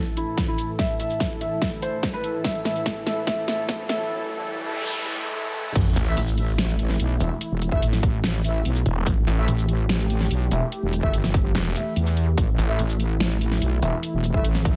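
Heavy wobble dubstep at 145 BPM in a half-time feel, this chaotic excerpt from a longer piece opens with a build-up where a lush, airy supersaw pad holds sustained chords under a low-pass filter sweep and sidechain pumping. A soft, felt-muted upright piano carries an intimate melody from 0.2 to 4.1 seconds while the drum kit plays a fill, its huge snare, bright hats, crash and shaker sitting up front beside a punchy, overdriven electronic kick. After a break with a background riser and noise sweep, the drop lands at 5.8 seconds with an impact and a sub drop. Here an up-front wobble bass, detuned and saturated with chorus, joins a growling, aggressive distorted saw bass with a moving notch, the two filling the low end with heavy, compressed weight. Behind them a mellow brass ensemble adds classical-style stabs with light vibrato and digital delay, all set in light reverb and digital ambience.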